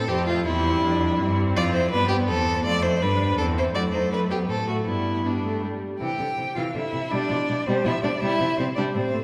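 A graceful, spirited classical-period movement for string quartet in C major opens with all four players together at a quick 163 BPM in 3/4: a rich, expressive first violin carries the melody with vibrato and portamento, while a clear, smooth second violin sits up front on an even second line. Beneath them, a distant viola with gliding portamento fills in the accompaniment, and a bright, focused cello anchors the bass. The harmony moves from C/E through F and a rootless D13/F# to G before a new section at 6.0 seconds settles back on C, all heard from further back in a wet scoring stage with a 2.0-second reverb tail, in a short cut from a longer piece.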